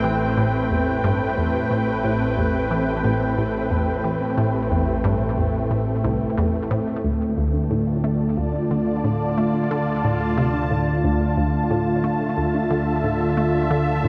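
Drenched in a wet cathedral reverb, this excerpt of ambient, sequencer-driven space music seems to float in a vast, echoing hall, with an expansive, hypnotic mood over a straight 4/4 pulse. Up front, a sweeping resonant pad holds sustained chords; its bright, airy, detuned sawtooth tone evolves through a slow filter swell and a long release, thickened by chorus. Beneath it, a juicy, squelchy blip pluck plays a low riff with a fast attack and short decay, its chorus and tape echo adding a springy glow. A very quiet, soft and round pluck traces gentle, dark arpeggios in the upper register, and a fat, thick analog bass with a detuned sawtooth edge anchors the bottom. The harmony moves from Am7 to Dm at 7.0 seconds, with all four parts sounding throughout the 14.1-second fragment.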